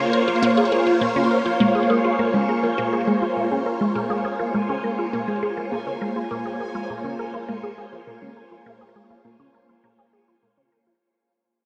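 A phased string machine sits up front with swirling, vintage sustained chords, its ensemble chorus and phaser giving the Bb minor seventh harmony a slow, glowing bloom in this hypnotic, mysterious stretch of sequencer-driven space music. Beneath it, a resonant blip pluck repeats a juicy, squelchy riff with a fast attack and short decay, its phaser and delay adding a bright, rubbery edge. High in the background, a bubbling stepped-filter texture shimmers through random filter steps and chorus, lending the scene a restless, alien glint. At 1.6 seconds a soft, round pluck enters with dark, full-bodied arpeggios carried by chorus and delay, its tone shifting under a filter sweep as it fades out toward 11.0 seconds. The whole excerpt floats in a vast, echoing reverb with a long tail, and a cassette-tape grain gives the recording a hazy, worn character.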